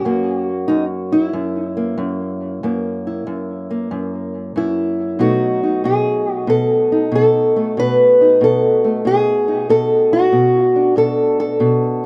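A fingerpicked old ladder-braced acoustic guitar carries this short acoustic country blues fragment alone, its old strings giving a boxy, woody tone that sits up front with a touch of tape echo. At 94 BPM in a swung 4/4, the mood is swaggering and gritty, moving from F#7 to B7 and settling on Bm7 around 10.3 seconds. A moderate studio reverb and a dark production wrap the roughly 12-second cut, which is lifted from a longer piece.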